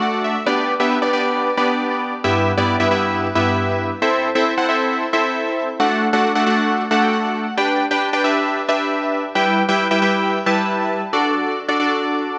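In a straight 4/4 at 135 BPM, this melancholic yet driving pop fragment features solo analog keys, round, detuned and bright with a sawtooth edge, a filter sweep, chorus and digital delay, sitting up front in a lush hall reverb, with synth-key fills at 0.0 and 6.7 seconds over a G, Em/G, Am, D/A progression that turns to D at 11.1 seconds.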